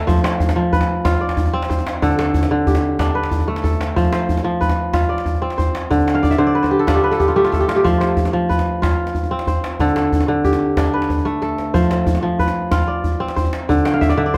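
Kora and djembe start together at once in this flowing, warm excerpt of traditional West African string music, set in F lydian at 123 BPM with a steady 12/8 pulse. The fingerpicked kora carries the arpeggios across a range from D3 to G5, its acoustic strings ringing and crisp, sitting up front in the mix. The djembe is medium-tuned and carries a buzz of metal rattles, heard as an acoustic drum with the feel of a large room behind it. After a short opening passage, the piece settles into a longer stretch from 4.0 seconds, with the harmony moving between F and D5. The kora breaks into a fill at 6.2 seconds and again at the very end, while the djembe adds a brief fill at 11.3 seconds. Recorded with close, detailed microphones and little reverb, the sound is intimate and clear.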